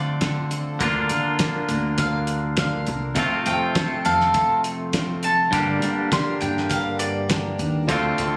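A bright bowl-back mandolin carries the melody as a solo through this wistful, reflective folk rock and heartland rock excerpt, its double strings ringing over a shimmering, octave-doubled twelve-string acoustic guitar and a twangy electric guitar riff bathed in spring reverb. A woody, growly pizzicato upright bass plays alongside a cloth-damped, thuddy drum kit whose fat snare sits up front, while a mellow tonewheel organ holds very quiet, flute-like chords through a slow rotary speaker. A dark, slightly detuned upright piano with audible action noise slips in at 7.9 seconds, all heard through a light, small-room ambience with the intimacy of a phone recording.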